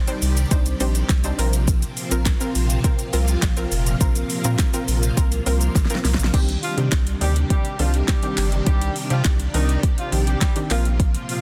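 A dense, heavily limited modern master in a digital ambience carries this driving, energetic dance-pop piece, built on an up-front electronic deep house kit with a deep kick, fat snare, metallic hats, handclaps, shaker and crash, and a thick, saturated sub bass with a fast attack. Shimmering vintage string-machine violins hold slow-attack sustained chords in ensemble chorus, while a lush, detuned unison pluck adds punchy, decaying accompaniment, both pumping with sidechain over a Cmadd9 to Bbsus2 progression. After a drum fill at 5.8 seconds, a tight horn section with light vibrato and octave doubling takes the melody from 6.6 seconds, its smooth top trailed by dub echo.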